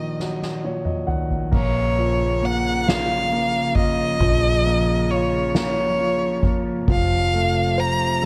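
A rich, focused solo violin sings the melody up front, its bowed vibrato carrying an analog delay as it moves between Db5 and Bb5 in this aching, melancholic six-eight pop ballad in Bb harmonic minor, taken from a longer piece at a slow 45 BPM in dotted quarters. A warm concert grand piano accompanies from the start, intimate and polished with audible action noise, deep bass and long sustain, and it plays a fill alongside a drum fill between 0.2 and 1.5 seconds over an Ebm chord. The soft-mallet drum kit brings dark cymbals, a medium-tuned snare, toms and a boomy kick with a natural hall character. At 1.5 seconds the harmony moves to Bbm as a vintage foam-muted fingered electric bass enters with a round, amped tone, and a dark studio string section adds sustained chords in the background, played sul tasto with light vibrato and a soft attack. The production is dark overall, with light reverb and small room ambience, and the progression turns to F at 6.9 seconds.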